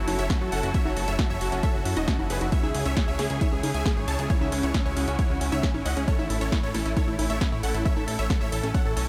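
Uplifting trance at 135 BPM in C# minor, soaring and driving, with huge, detuned supersaw chords carrying the melody through a diffuse ambient delay and sidechain pumping, joined by a very quiet unison pluck playing a second line and underpinned by dark, veiled con sordino strings in the background over F#m7, C#m and A. A funky, evolving analog bass with ring modulation sits up front and pumps with the sidechain, while a round, warbling vintage pluck traces soft arpeggios with chorus. An overdriven, dry kick leads the rhythm from 0.3 seconds alongside a punchy drum machine's snare, hi-hat and congas in a small room, and a barely audible electronic swell rises at 1.8 seconds in this fragment cut from a longer piece.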